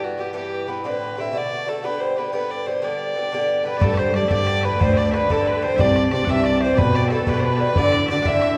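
Celtic folk in the form of a slide, this cheerful, bright fragment of a longer piece moves in 12/8 with a straight feel. A rich, nasal fiddle carries the melody up front with light vibrato and an airy bow. Beside it from the start, an acoustic Irish bouzouki picks its doubled, metallic strings as accompaniment. At 3.7 seconds bagpipes enter in the background with a piercing, continuous second line. At 3.8 seconds a soft-attacked, sul tasto cello takes the bass in an intimate, close sound, joined by the open, boomy bodhran heard close and dry. The music sits in a reverberant recital hall, heard from further back in the room.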